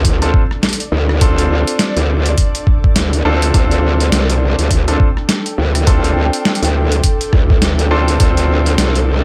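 Funky and gritty, this short glitch hop excerpt rides a swung sixteenth-note groove in 4/4. An up-front electronic kick with a thumpy, pitched-down, tape-warm punch pairs with a compressed sampler-style boom bap kit of hi-hat, rim click and a medium-tuned snare. A growling, aggressive bass wobbles through a formant filter, its sine core saturated with tube drive and thickened by chorus, sitting loud and bright at the front. Above it, a brilliant grand piano plays stabs with intimate, audible action noise, pumping against the sidechain and trailing a delay. A very quiet electronic impact marks the opening and ends at 1.2 seconds, and from 0.6 seconds an ethereal, airy pad of detuned sawtooth and triangle layers with a noise wash drifts mellow in the background through ensemble chorus, phaser, reverb and its own sidechain pumping.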